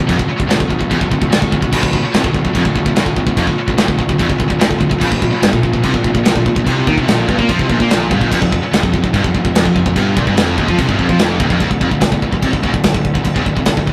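A straight 4/4 pulse at 146 BPM drives this relentless, aggressive heavy metal excerpt in D phrygian, cut from a longer piece and moving from Dm through Bb5 and F5 before landing back on Dm at 11.6 seconds. The modern studio drum kit sits up front with a tight kick, a medium-tuned snare, crash and china cymbals, its acoustic sound caught in a small room. Behind it, a heavy high-gain guitar and a scooped high-gain guitar play bright, distorted, picked riffs, joined by a very quiet, double-tracked crunchy overdriven guitar. A fuzz picked electric bass adds a growly, overdriven low end in the background, while a distant, mellow woodwind section holds sustained chords with light vibrato in a classical style. The woodwinds and the crunchy guitar drop out at 11.6 seconds, leaving the drums, bass and two high-gain guitars to carry the final stretch, all within a rough rehearsal-room recording touched by light reverb.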